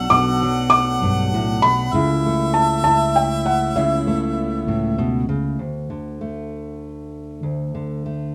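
Warm and nostalgic, this short cut from a longer acoustic folk piece moves at a gentle 66 BPM in a steady 6/8, centred on D major. A felt-muted upright piano carries the melody high in its range, its tone soft and dark with audible action noise and a short, thick-felted sustain. A harmonica with light vibrato and a smooth top traces a quieter second line beneath it, while a dark, full-bodied fingerpicked steel-string guitar sits up front with the occasional finger squeak. A very quiet chamber string section, bowed sul tasto with a soft attack, holds sustained chords, and a bright, growly fingered electric bass anchors the low end. The harmony moves from Bm to A/C# before settling on a bare D5 at 5.6 s, where the guitar carries on alone until 8.3 s, all heard through a wet reverb in a rough, home-demo mix.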